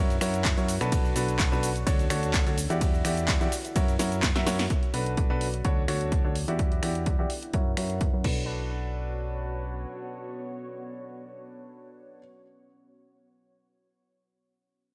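A woody, intimate upright piano riff with audible action noise, low-pass filtering and tape echo leads this energetic, bittersweet piano house excerpt in B minor at 127 BPM, riding a punchy, round FM bass with tube saturation, an overdriven analog drum machine kit of snare, handclaps, finger snaps, hi-hat, cabasa, ride and crash cymbals, a tape-warm electronic kick, and a deep, moody detuned pad in the background, with sidechain pumping on the piano, bass and pad, a drum fill at 4.0 seconds, a filter sweep on the piano from 4.7 seconds, and the drums stopping at 8.3 seconds in an echo-heavy mix with light reverb.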